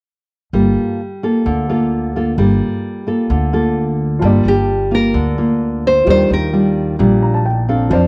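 Bossa nova in G minor at 130 BPM, this short cut from a longer piece carries a wistful, melancholic mood in a straight 4/4 feel. A fingerpicked nylon-string guitar, full-bodied and up front, lays down the accompaniment from 0.5 seconds alongside a woody, thumpy pizzicato upright bass, moving from Gm9 to Ebmaj9 at 6.1 seconds. At 4.2 seconds the music shifts into a new section as a dark, mellow baby grand piano joins in the upper register, intimate and natural with short sustain and audible action noise, and it adds a brief fill near the end. A second nylon-string guitar, thumb-plucked in a classical manner, carries a compact melody from 4.5 to 7.2 seconds. Cassette tape colours both guitars and the piano, and a moderate small-room reverb gives the whole home recording a close, homely feel.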